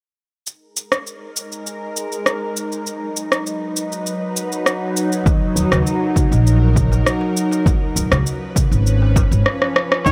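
This hypnotic, organic downtempo excerpt opens at 0.5 seconds with an overdriven electronic shaker and rim click, up front and re-recorded in a small room. A bright, tense, string-like drone of detuned sawtooth tones soon follows, holding sustained chords with a slow attack, vibrato, phaser, sidechain pumping and shimmer reverb while a filter sweeps across it. At 5.3 seconds a woody pizzicato upright bass and a punchy, layered, overdriven electronic kick drum arrive up front, joined by a crisp, saturated metal-shell darbuka in the background. The music moves at 100 BPM in a straight 4/4, tuned to A4 = 439 Hz, through Absus2, B, Ebm and Db7 chords. A break and drum fill lead to 10.1 seconds, where a brilliant, nasal trumpet with a straight mute enters as a jazz-style solo and a ringing, fingerpicked kora adds arpeggios through a low-pass filter. The mix sits in light reverb with small-room ambience.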